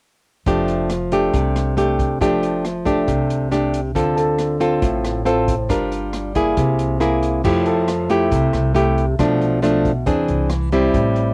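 A straight 4/4 bossa nova groove at 138 BPM in F major sets a sophisticated, relaxed mood, as an up-front fingerpicked nylon-string guitar with cassette-tape colour carries the harmony over woody pizzicato upright bass and a dark, smooth small-room jazz kit of hi-hat, rim click, boomy kick and crash, while a concert grand piano in the background enters at 4.2 seconds and drops out at 9.2 seconds, all with light reverb on a home cassette recording cut from a longer piece, the chords moving from F69 through Dm7 and Caug7 to Fmaj9, Bm7b5 and E7alt.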